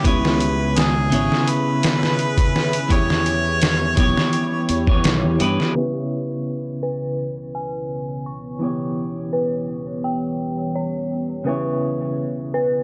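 A straight 4/4 pulse at 84 BPM drives this brooding, smoky trip hop piece in C# minor, carried by a compressed, pitched-down sampler-style kit with a thumpy kick, medium-tuned snare and hi-hat, sitting up front with a gritty, large-room character. Beneath it, a growly overdriven fingered electric bass with transformer saturation holds the low end, while a distant, roomy harmonica with light vibrato sings a short melody coloured by tape echo and 12-bit sampler grit. A clean, picked electric guitar with tremolo and the same sampler grit plays accompaniment throughout, over a deep, moody sawtooth pad whose detuned unison, wave-folding and ring modulation are softened by chorus and built-in reverb. At 5.8 seconds the drums, bass and harmonica have dropped away, and an eerie, inharmonic FM synth bell takes over with up-front arpeggios, treated with chorus and tape echo, as filter sweeps move across both the bell and the pad. 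The harmony alternates between C#m7 and Em6, and the whole recording has a dry, gritty hardware sound.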